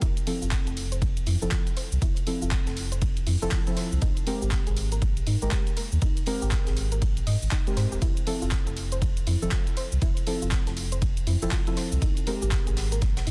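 Sunny and relaxed, this deep house passage, cut from a longer piece, moves at 120 BPM in 4/4 with a 61% swing on the 16ths, alternating between Fmaj7 and Abmaj9 every four seconds. A punchy electronic kick sits up front, joined by a layered house kit of cabasa, handclaps and hi-hat, while a tight, polished metal kit with bright cymbals, a high-tuned snare and ride stays in the background, its parts thinned by high-pass filtering. Underneath, a deep, full sub bass with an added octave carries tube saturation and sidechain pumping. From 0.3 s a warbling, vintage chord stab with detuned, dark tones comes in, coloured by chorus, analog delay and the same pumping. A soft, round pluck plays gentle arpeggios with a moving notch filter, tucked behind the mix in similar chorus and delay, all set in a small room ambience with vinyl crackle over a dense, heavily limited modern master.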